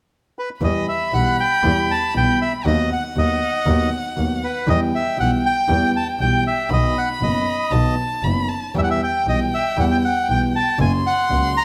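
A large studio reverb lends this tango excerpt a wet, spacious glow, with the bandoneon sitting up front in the mix. The bandoneon opens at 0.4 s, carrying the melody with a reedy, dark and smooth voice, and the rest of the ensemble joins at 0.6 s. A single bowed violin adds a second line above it, expressive with vibrato, soft attacks and portamento. Beneath them, a concert grand piano supplies warm accompaniment with a deep, natural bass, while one bowed double bass sounds close, biting and earthy, its nasal, airy tone touched with light vibrato. The rubato feel and a harmony that swings between E minor and B before landing on F# give this passage, cut from a longer piece, a passionate, tense character.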